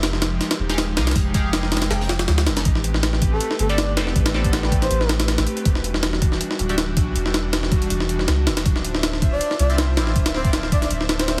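Drum and bass with a jungle edge, this dark, frenetic cut from a longer piece runs at 160 BPM in 4/4 with a light swing on the 16ths, sitting in A minor over a chord cycle of Fm9, Am9, Em9 and Dm9. A gritty, pitched-up sampler-style breakbeat kit drives it throughout, its thumpy kick and high-tuned snare pushed up front with a tape-warm compressed punch. Underneath, a deep, round sub bass built from triangle and square waves holds sustained low notes. A very quiet, saturated acoustic break with a small-room, rolled-off top adds a second layer of hi-hat and snare until 2.6 seconds. In the background, a nasal, band-passed sawtooth chord stab plucks bright, decaying chords through phaser, analog chorus and dub echo from 0.7 seconds, and a breathy, flute-like synth lead with vibrato, a noise layer and a sub octave drifts in around 3.3 seconds and again near the close, soaked in chorus and dub echo. 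Light reverb surrounds the mix, and heavy multiband compression gives the whole a squeezed, radio-like sound.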